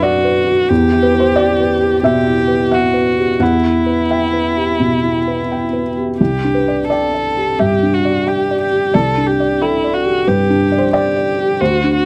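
A rubato 4/4 pulse around 89 BPM carries this fragile, longing neoclassical piano and strings excerpt, where a felt-muted upright piano, mellow and intimate with audible action noise, accompanies a dark, close solo violin singing a bowed melody with vibrato and portamento over Bm, Em and Csus2 chords in light reverb, both parts playing throughout the 12.1 seconds.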